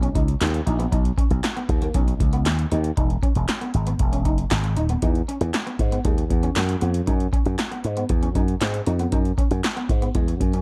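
Early-eighties boogie funk at 117 BPM in a straight 4/4, this short, smooth and danceable excerpt cut from a longer piece runs about 10.6 seconds. An electro analog drum machine drives it with a deep kick, punchy snare, metallic hats and handclaps, its overdriven sound re-recorded in a small room and placed up front. A slap bass run through an envelope filter sits just as prominently, bright, growly and direct, moving between D#1 and G#2. Lower in the mix, a picked electric guitar at the edge of break-up plays a compressed riff between G#3 and D#4, colored by an ensemble chorus. The harmony moves from Badd9 to Emaj9 at 3.0 seconds, and the dark production keeps reverb to a minimum.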